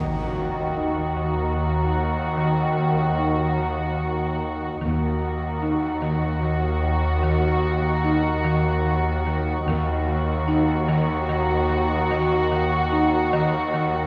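Eerie and mysterious, this short cut from a longer suspense film score moves at 74 BPM in a slow 3/4, holding on an Eb minor chord throughout. An electronic impact opens the passage and ends by 2.4 seconds, while a calm, organ-like drone sits low on Eb2, its nasal, warbling tone thickened by ensemble chorus and its own reverb. Up front, a muted violin section carries the melody on Gb4, veiled and dark with light vibrato and a smooth top. Beneath it, a distant muted cello section holds the bass on Eb2, and a close double bass section adds brief bowed touches at 0.0, 4.8 and 9.7 seconds. In the background, a buzzing marimba played with medium mallets repeats a woody, dry riff between Eb3 and Eb4. A wet scoring-stage reverb surrounds the ensemble, adding to the shadowy, unsettled atmosphere.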